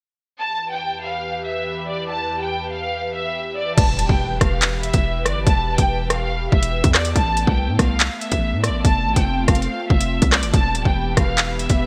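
Bathed in light reverb with a gleaming 1980s-style digital sheen, this dark, menacing half-time drill excerpt at 142 BPM in E phrygian opens on an intense, lush bowed violin section, rich with vibrato and shaped by a low-pass filter and digital delay, over a soft, breathy pad treated with chorus and phaser, before a punchy, heavy 808-style bass and an up-front electronic drum kit with a hard-clipped kick, metallic hi-hats, handclaps, rim clicks and crash arrive at 3.8 s alongside a very quiet electronic impact at 3.9 s, as the harmony moves from Em through Asus2 and F back to Em.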